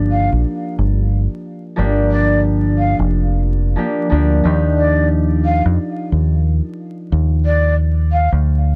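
Vinyl crackle and a light reverb frame this gritty, dark boom-bap hip-hop passage, cut from a longer piece and swinging at 90 BPM in G minor over Gm7 and Ebmaj9. A deep, round fingered electric bass sits up front from 0.0 s beside a mellow, ringing concert harp accompaniment carrying cassette tape color, filtering and plate reverb. From 0.1 s a breathy, hollow jazz flute with vibrato and a soft attack plays the melody through filters and analog delay.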